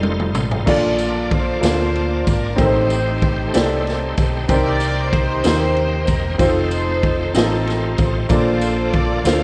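A roomy big-band drum fill opens this slow, hopeful gospel excerpt in 6/8 at 63 BPM in Bb major, with a smooth vintage grand piano, a round, punchy hollow-body electric bass and a bright tonewheel organ with slow rotary speaker and key click sitting in the background, before a jingly tambourine enters at 0.3 s and a soft, floating bowed string section carries the soulful melody from 0.7 s, the recording coloured by light reverb and the warbly pitch drift of worn cassette tape.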